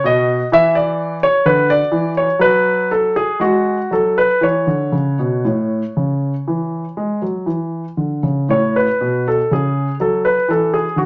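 Rubato phrasing in 4/4 gives this short passage, cut from a longer piece, a flowing, serene ease as it moves through a baroque-style suite movement in a classical vein. A solo grand piano carries everything from start to finish, its intimate, natural tone placed up front with the sound of the action audible beneath the notes, all set in a moderate studio reverb. The harmony drifts from Dsus2 through F#madd9 before settling on A, pausing briefly and then returning to A at 8.5 seconds.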